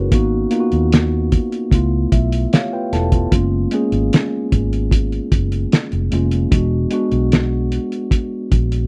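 A dry, close 1970s-style studio sound frames this short cut of lush, cinematic soul at 75 BPM, where a mellow tine electric piano voices smooth chords from Abm9 through Db7alt and Gbmaj9 to E9, adding fills at 1.7 and 8.5 seconds, over a dark, round, foam-muted fingered electric bass and a cloth-damped, thuddy drum kit with a fat snare, tight kick and hi-hat, its gritty tone rolled off up top.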